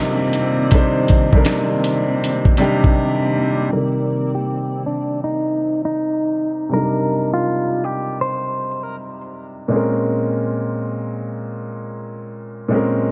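A swung, gritty sampler-style kit with a thumpy kick and fat snare drives this nostalgic, melancholic lo-fi hip hop excerpt before dropping out into a break at 3.0 seconds. A woody upright piano with audible action noise carries the accompaniment throughout, joined early by a cloudy, evolving granular pad in the background and a delicate, bell-like celesta that is barely audible. From 3.7 seconds a clean, hollow-body electric guitar takes the melody under a filter sweep, all set in a dark production with moderate plate reverb.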